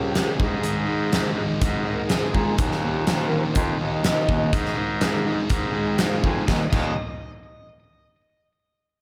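A pair of sludgy, overdriven guitars opens this swaggering classic rock excerpt at 123 BPM alongside a breathy, vibrato-tinged baritone saxophone carrying the bass line and a vintage string machine of cellos holding sustained, chorused chords in the background. A huge arena drum kit with a fat snare and punchy kick sits up front from 0.2 s, with one guitar's riff thickened by slapback echo and the whole mix set in a lush hall. Near the end, at 6.5 s, a bright overdriven electric guitar adds a brief second line with slapback echo and digital delay as the chords move to Eb.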